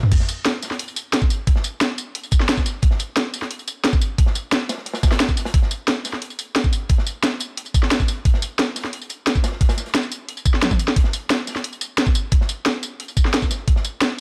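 A small-room ambience surrounds this dark, aggressive drum and bass drop at 177 BPM, cut from a longer piece, where a knocking, tape-warm electronic kick sits up front beside a layered, produced drum kit with a cracking snare, crash, hi-hat, tambourine and toms in studio reverb, while a crunchy acoustic breakbeat kit with a smooth, medium-tuned snare and rolled-off top hovers in the background, with a drum fill arriving at 10.6 seconds.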